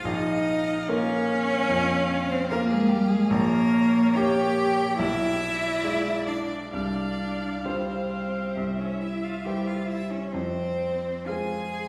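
The recording blooms in a reverberant church or concert-hall space, its 1.6-second decay wrapping the quartet in a solemn glow. This is a slow, elegiac classical movement for piano quartet, moving in 4/4 at around 60-76 BPM with a flexible rubato, heard as a brief passage cut from a longer piece. The cello sits closest and loudest, its rich, vibrato-laden bowing carrying a second line beneath the violin's smooth, even melody. The clear viola adds a quiet, high-lying accompaniment, while the polished baby grand piano, placed up front, supports the strings from deep bass into the middle register. The harmony travels from Bbm through darkening diminished chords to a Csus4 that settles onto C at 8.6 s before coming to rest on Fm at 10.3 s.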